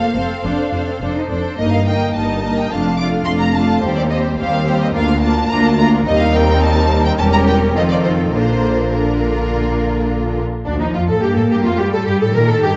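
A focused first violin section carries the melody at the top of this lively, spirited classical-period movement for string orchestra, its bowed vibrato sounding smooth in the upper register as it reaches as high as D6. Beneath it, a second violin section plays a clear, intense second line, while distant, rich violas fill in the accompaniment and cellos and double basses, with the basses' lighter vibrato, anchor the bass with an even, smooth tone. The music moves at a quick 106 BPM in 4/4 with a straight feel in Bb major, stepping through a descending chain of chords from F toward a cadence on Bb around 8.3 seconds, passing through Edim7 and F7 on the way. A new section begins at 10.7 seconds, turning from Bb/D to Gmadd9 before the cut. The strings sit in a wet scoring-stage reverb with a two-second tail, and the production is dark and warm, trimmed of any sparkle above 7.9 kHz.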